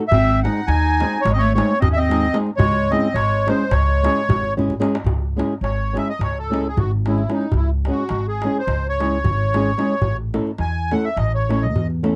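A dark, thumb-plucked flamenco guitar and a crisp, deep metal-shell darbuka open this bittersweet, virtuosic Balkan wedding-band fragment in 9/8, joined at once by a woody, thumpy pizzicato upright bass, a bright classical-style clarinet second line that drops out at 4.5 seconds, and a reedy, sweet accordion with light tremolo tuning that, after a darbuka fill, takes a solo from 5.1 seconds, while the harmony moves from G# through C# minor to A, in a dry, close 1970s-style studio sound.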